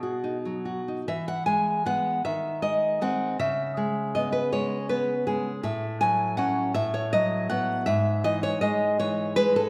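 A moderate scoring-stage reverb gives this short cut from a longer romantic duo for flute and classical guitar a gentle bloom, with the nylon-string guitar sitting up front, fresh-stringed and fingerpicked, finger squeaks audible as it carries the accompaniment from 0.0 to 9.7 seconds across a range from G#2 to G#5. The bright concert flute, airy, expressive and very quiet with vibrato and a soft attack, sounds a single G#4 in the first 0.5 seconds before the guitar continues alone in E major, moving from B through C#m7 and F#m/A to E/G#. The mood is tender and warm, the 6/8 pulse unhurried at 53 BPM in dotted quarters and shaped with rubato.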